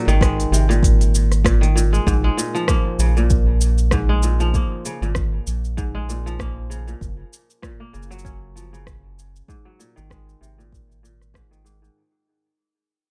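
A swung 16th-note groove at 97 BPM in 4/4 carries this autumnal, wistful folktronica cut from a longer piece, with smooth hi-hats, rim clicks and shaker from an organic electronic kit in a studio ambience, plus a deep electronic kick set in the background. A round, dark analog bass sits up front with sustained, fast-attack notes, under fingerpicked kora arpeggios that ring crisp through a low-pass filter sweep and digital delay. Over chords moving from Absus2 through Bb7(no3) and Gb to Ab7sus2, the dry mix fades out across the full 12.0 seconds.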